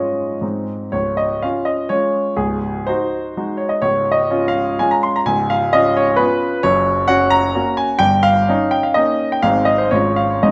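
Classical romantic triple-time dance in 3/4 and Db major, a graceful, rustic fragment of a longer piece for solo grand piano, clear and up front across a range from Db1 to C6, moving with rubato between 108 and 140 BPM in dotted rhythms as the harmony passes from Db through Db7 to Gb and Eb7/G before settling on Ab and Db/Ab, all bathed in a wet recital-hall reverb.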